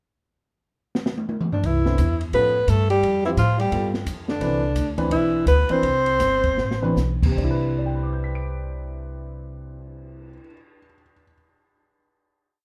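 This short, swinging jazz piece in C major opens with a pickup bar and a drum fill at 0.9 seconds on a dark, smooth-sounding kit in a small room, with a boomy kick and a medium-tuned snare. Upright bass, alto saxophone, tenor saxophone and upright piano then enter almost together for a playful small-group swing and bop passage at roughly 146 to 173 BPM in 4/4. The breathy, close-miked alto carries a motif-based melody with vibrato up front, while the tenor adds a softer, subtoned second line in octave doubling with light vibrato. Beneath them the woody, thumpy upright bass walks, and the intimate, slightly detuned upright piano comps in syncopated drop-2 voicings, its action noise audible. From 4.4 seconds the tempo slows, another drum fill leads into a final chord at 7.4 seconds, and the piano rings on last under light reverb.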